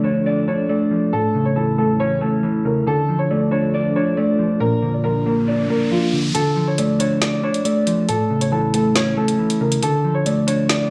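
A dark, worn grand piano carries the melody up front, its boxy, filtered tone ringing with long sustain in a menacing drill track at 138 BPM with a half-time 4/4 feel. The tuning sits at A4 = 436 Hz. Beneath it, a clean, fingered electric guitar adds mellow accompaniment, softened by a low-pass filter and given a springy reverb tail. In the background, a deep, detuned analog pad holds moody sustained chords with a slow attack and chorus, shadowed by a sub octave. An electronic riser climbs in at 5.3 seconds. At 6.3 seconds the pad drops out and a drill drum kit enters, its woody snare and metallic hi-hats sounding tape-warm and produced. The chords cycle through Dm, A and Bb in D harmonic minor, and the whole piece is bathed in large studio reverb, as if played on a big sound system in a bare room.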